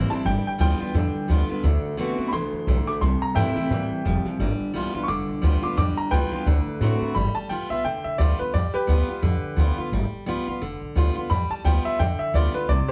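A rollicking, upbeat rockabilly cut opens with the full band playing live in one room: a clear, intimate upright piano carrying the melody with audible action noise, a bright dreadnought acoustic guitar picking the accompaniment with a touch of finger squeak, a twangy, slightly broken-up electric guitar riff through a small old amp with spring reverb, and a woody, thumpy upright bass up front on gut strings. The swung groove moves through dominant seventh chords. After the electric guitar drops out at 7.1 seconds, the piano takes a polished, long-sustaining solo from 7.2 seconds over the guitar and bass in a moderate studio reverb.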